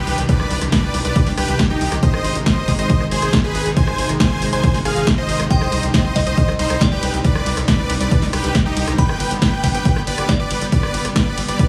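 A huge, bright supersaw lead carries the melody in this euphoric, driving slice of uplifting trance, its detuned unison sawtooth layers and airy noise sheen pumping with the sidechain and trailed by tape echo. Beneath it, a lush supersaw pad holds sustained chords in the background with a slow attack and long release, while a tight sequencer bass adds fast-attack, decaying filter plucks, both breathing with the same pumping. A very quiet downlifter sweeps through the opening 2.0 seconds as a punchy analog drum machine brings hi-hat, ride cymbal, rim click and snare, joined at 0.3 seconds by a prominent electronic kick. At 5.5 seconds a glassy, crystalline FM bell enters as a second line, warbling with chorus, tremolo and dub echo in the background. The harmony moves from a minor add-nine chord through Ab and back before landing on G, and the mix sits in a dry, small room with little reverb.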